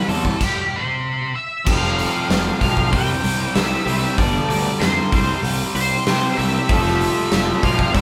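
A dark octave-fuzz lead guitar melody, a biting guitar riff in the background and a bright overdriven semi-hollow guitar riff open this swaggering classic rock excerpt at 96 BPM. A big, up-front rock drum kit with a fat snare, punchy kick, crash and hi-hat arrives at 0.1 s alongside a round, fuzzed picked bass, and a double-tracked phaser guitar enters at 6.7 s. The band plays live in one room through moderate reverb, with a stop from 0.4 to 1.7 s and chords moving C, F, Csus2, G.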